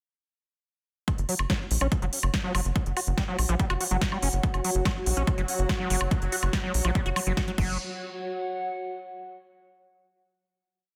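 A screaming, squelchy acid line with distortion, chorus, tape grit and delay drives this short, intense psychedelic trance piece at 143 BPM, its resonant filter sweeping from 1.1 to 7.8 seconds over a tight, galloping sixteenth-note sequencer bass and a punchy four-on-the-floor kick with programmed hats, snare backbeat, woodblock and crash. A warbling, lo-fi pad with slowly shifting dark chords pumps behind the groove from 2.1 seconds, joined in the background at 4.4 seconds by a bubbling stepped-filter drone. The pad carries a final note to 9.4 seconds in a dense, heavily limited mix with light reverb.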